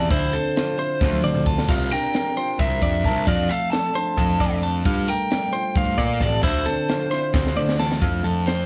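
A short, intricate and playful math rock and midwest emo passage in 7/8 opens with an overdriven electric guitar carrying a bright, compressed melody through tape echo, over a clean, scooped electric guitar accompaniment, sparkling twelve-string arpeggios and an up-front, fuzzy picked bass. A crisp, punchy fusion kit with a high-tuned snare and dark cymbals plays fills at 1.0 and 7.3 seconds as the harmony moves through Dm9, C9sus4, F6 and Gm9. The sound is tight and polished, with only a small room ambience.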